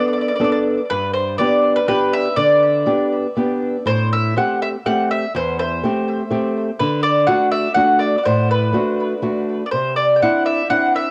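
A home cassette recording with a moderate spring reverb gives this brief cut from a longer Italian folk serenade a homespun, roomy glow. At 123 BPM in a straight 3/4 and G major, a mellow, woody mandolin carries the romantic, lively melody on picked double strings, touched with tape echo, while a small-sounding, fingerpicked nylon-string guitar with fresh strings accompanies, both placed up front. The harmony moves from Bm7 through G, Am7 and D before settling on Cadd9 at 9.7 seconds.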